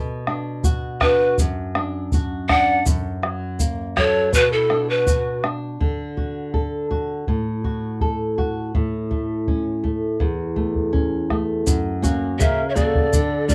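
A fingerpicked flamenco guitar opens this wistful yet festive Andean folk piece, its tone acoustic with audible finger squeak and a cassette-tape grain, joined almost at once by a round, compressed and saturated bombo and a grainy, band-limited tube shaker. From 1.0 s a breathy bamboo pan flute carries the melody up front with chiff, vibrato and an unsteady tone, shadowed by a mellow, end-blown large quena on a distant second line; both winds fall away at 5.4 s while guitar and bombo carry on through the middle, returning at 12.4 s. The whole sits in a damp booth ambience of a home cassette recording, and the clip is cut from a longer piece.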